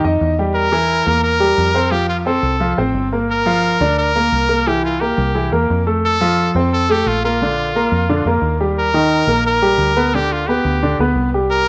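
Joyful and festive, this short salsa excerpt at 175 BPM in a straight 4/4 features a brilliant, forceful trumpet carrying the melody up front with vibrato and a punchy pop-style solo tone. A clear, polished baby grand piano provides present accompaniment, while a dark, round, foam-muted fingered electric bass anchors the low end. The parts sit in a small room with light reverb, moving through changes such as Gm7, C7, F and Bb before landing on G/D near 10.1 seconds.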